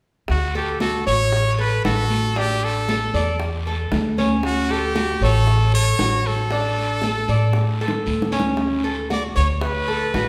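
Sunny and warm, this short Cuban son and guajira cut features a brilliant, punchy trumpet solo with light vibrato, played up front alongside a woody, thumpy pizzicato upright bass. Beneath them, tight high-tuned bongos, bright thin-skinned congas and a raspy guiro sit in the background, with a drum fill from 7.6 to 8.6 seconds, while a metallic, double-strung tres joins with picked arpeggios at 0.6 seconds. The whole ensemble rings in a wet recital-hall reverb over chords alternating between Dmaj7 and Asus4.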